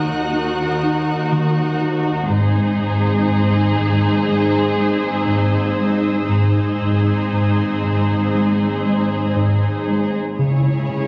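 In this uneasy, ominous suspense film cue, a soft-mallet vibraphone rings briefly until 2.3 s over veiled, con sordino strings: muted violins carry the melody alongside a distant second violin line and a faint high violin texture, lush violas fill the middle, and cellos and double basses sit in the background, while a deep, round analog bass riff stands out loudest and a very quiet, eerie metallic inharmonic drone creeps in at 0.1 s, the whole passage wrapped in a wet scoring-stage reverb and heard as if captured on a phone in the room.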